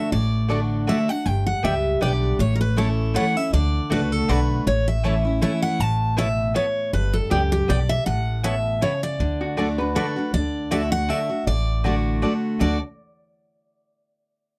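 Bluegrass in a lively, driving 3/4 at 159 BPM, swung on the eighths and set in D major, this short cut from a longer piece moves through D, G and A chords with touches of Aadd9. Two picked steel-string dreadnought guitars sit up front, one carrying the melody and the other the accompaniment, both bright and full-bodied with audible finger squeak. An upright bass, plucked and woody on steel strings, anchors the low end just as prominently, while a mandolin with its doubled strings adds woody stabs from 0.5 seconds. Near the end, a lap resonator guitar played with fingerpicks and a slide slips in from 9.4 to 10.3 seconds with a metallic, nasal second line, mellow and set back in the mix. The sound is dry and close, in the manner of a 1970s studio recording with little reverb.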